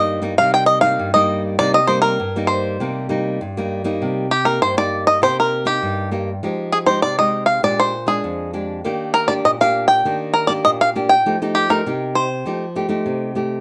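Bittersweet yet lively, this samba, cut from a longer piece, pairs a twangy, percussive bluegrass banjo playing the melody with fingerpicks against a warm, classical-style nylon-string guitar fingerpicking the accompaniment on fresh strings, both sitting up front. The harmony moves from a long Cm7 through Fm9, Bb6 and Ebmaj7 to F9. Light reverb adds a little air before the banjo stops at 13.0 seconds and the guitar carries on alone until 13.6 seconds.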